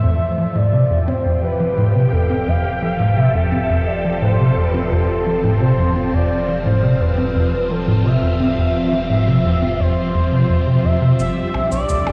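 This ambient space-music excerpt opens with a smooth, expressive synth lead singing over swirling, vintage string-machine chords colored by ensemble chorus and phaser, while a tight, punchy sequencer bass drives a saturated riff through lush chorus and analog delay. Beneath them, a deep, round sub bass fades in, staying in the background and carrying the low end. The tempo is 86 BPM in a straight 4/4, and the cosmic, expansive mood rests on an F chord that shifts to Gadd9 at 11.2 seconds. The lead, sweetened by chorus, vibrato and analog delay, sits in a mellow upper register. At 6.3 seconds an airy, breathy wind-like noise texture enters very quietly, and at 11.2 seconds cabasa and electronic percussion blips appear. A huge, wet reverb with a long 8.1-second tail and a cassette-tape haze give the sound the feel of a big system playing in a bare room.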